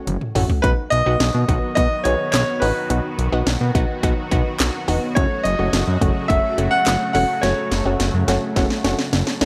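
Upbeat and bright, this short synth-pop excerpt moves at 106 BPM in a straight 4/4, centred on B mixolydian with chords shifting from F#m to B and back to F#m at 5.2 seconds. A clear, polished baby grand piano carries the melody up front from the start, its notes trailed by tape echo until it stops at 8.5 seconds. Beneath it, a round analog pluck with a detuned sawtooth-and-square tone, a noise layer and a moving notch supplies decaying accompaniment through chorus. A fat, thick analog bass with a wave-folded, detuned edge and a filter sweep sits up front alongside a punchy, layered house kit of kick, cracking snare, hi-hat, handclaps and toms, with drum fills opening the passage and returning from 7.4 seconds. A lush unison pad with a sub octave and slow attack enters at 0.6 seconds, its bright sustained chords washed through chorus and phaser, and the whole mix sits in light digital reverb.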